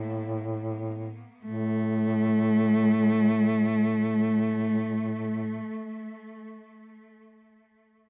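A focused, richly bowed cello with vibrato and tape echo carries the melody up front from 1.4 seconds, over a warm, punchy duduk drone with scooped notes that sounds from the opening in this solemn, longing Caucasian folk fragment in free time, captured with light reverb in a dry, close 1970s-style studio sound.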